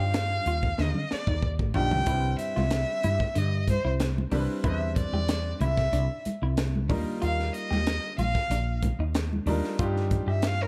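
A dry, dark-toned mix opens this bright, funky electric jazz fusion excerpt at 93 BPM, where an expressive bowed violin with vibrato and portamento carries the solo over Ebmaj9 and Cmaj9 chords, backed by brilliant baby grand piano, a growly, round fretless bass up front, clean compressed semi-hollow guitar stabs with lush chorus in the background, a crisp drum kit with a punchy kick and high-tuned snare that plays a fill from 0.8 to 2.1 s, and thin-skinned, damped congas joining at 2.6 s.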